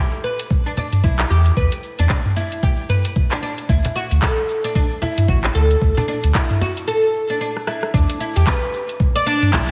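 A woody, plectrum-plucked oud spins delayed arpeggios over a deep, round sub bass pumping against a gritty, thumpy electronic kick, with an afro-pop kit of metallic hats, cabasa, handclaps, rim clicks and toms, plus a snappy cajon in the background until 6.7 seconds, giving this mystical, earthy organic downtempo excerpt a swung groove in a lush hall that breaks at 6.9 seconds before a drum fill leads into a new section at 7.9 seconds.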